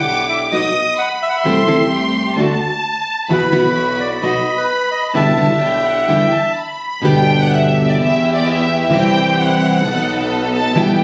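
A melancholic, passionate tango in E minor at 129 BPM with a rubato feel opens with a reedy, bright bandoneon melody carrying a slapback echo, over a lush, expressive violin section with portamento, smooth bowed string stabs with their own slapback echo, and an earthy, distant bowed double bass, joined at 0.5 seconds by an up-front, full-bodied fingerpicked nylon-string guitar; the bandoneon stops at 6.5 seconds, and at 7.0 seconds the music moves to G major as the violin section takes the solo, all heard through moderate studio reverb as captured on a phone in the room.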